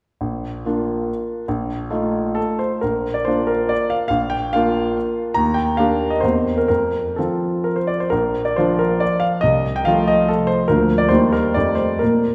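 Romantic classical dance in triple time for solo grand piano, graceful and proud, with dotted rhythms and supple rubato, its clear, intimate tone showing audible action noise and long sustain, sitting up front yet bathed in a recital hall's wet reverb as if heard from further back, in a short passage cut from a longer piece that ends on an F13 chord near 11.6 seconds.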